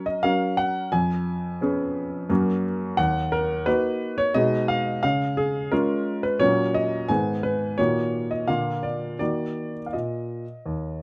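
An intimate, up-front grand piano sits in light reverb, its clear tone carrying the audible noise of the action in this short passage cut from a longer piece. It is a classical-period sonatina in 3/4 with a serious, dramatic mood, the solo piano ranging from Eb2 up to Ab5. The harmony moves from Gb through Db7/F and Abm/Cb before settling on a Bb chord at 8.5 seconds and resolving to Ebm at 9.2 seconds.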